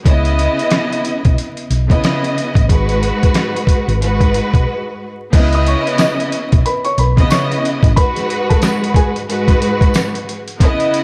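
Moody and reflective, this short boom-bap hip-hop cut from a longer piece rides a swung groove in a small room, with vinyl crackle hanging over the whole sound. A lush, bowed string section sits up front from the start, its vibrato-laden tone given a cassette-tape haze and filtered at both ends, while the harmony moves between C#m9 and G#m7. Underneath, a muffled, pitched-down sampler drum kit with 12-bit grit, a thumpy kick, a medium-tuned snare, rim clicks, hi-hats and crash, sits up front in the mix, paired with a round, punchy hollow-body electric bass that drops out at 7.9 seconds. After a brief break, a woody, mellow upright piano carries the melody from 5.5 seconds, softened by filtering and a tape echo. A jingly tambourine joins quietly in the background from 6.0 seconds, adding a bright edge behind the strings and drums.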